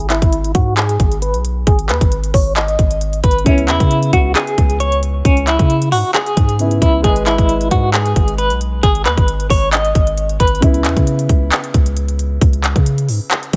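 A melancholic, hard-hitting trap cut in half-time opens with a clean, hollow-bodied electric guitar carrying the melody up front, colored by tremolo, a low-pass filter and tape echo, as a filter sweep moves through the opening seconds. Beneath it, a deep, sine-like 808-style bass sustains long notes with a fast attack and mellow decay. The electronic trap kit hits hard, with a clipped kick, crisp hi-hats and handclaps sitting forward in the mix. At 3.4 seconds a dark concert grand piano enters as quieter accompaniment, boxy and filtered, with deep low notes and long sustain, as the harmony moves between G#m and C#m7. The guitar drops out at 10.6 seconds, and piano, bass and drums close this dry, close-sounding fragment of a longer piece.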